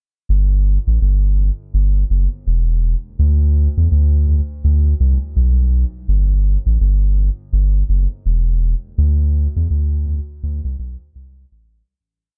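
Reggae at 83 BPM in 4/4 with a swung sixteenth-note feel, this short, sunny whole piece is a soft dub sub bass playing alone, deep, round and up front with tape echo, carrying a melodic line with rests between E1 and E2 in a dark, dry production that fades out from 9.0 seconds to its close at 11.9 seconds.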